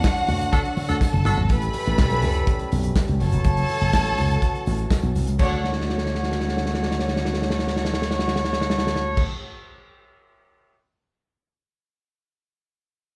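A large studio reverb gives this glamorous, joyful disco fragment the feel of a band playing live in one room, pulsing at 123 BPM in D major with a slightly flat tuning. Dark, smooth soul drums with handclaps, toms and crash open with a band accent alongside low-tuned congas and a faint jingly tambourine, while a growly, punchy slap bass with an envelope filter enters at 0.3 s and a tight pop horn section fires stabs from 0.5 s. Lush, biting bowed strings carry a second line over mellow, distant French horn chords moving from Dmaj7 through A7 and F#m7, and a long drum fill from 5.6 s leads to the kit playing alone after 9.2 s.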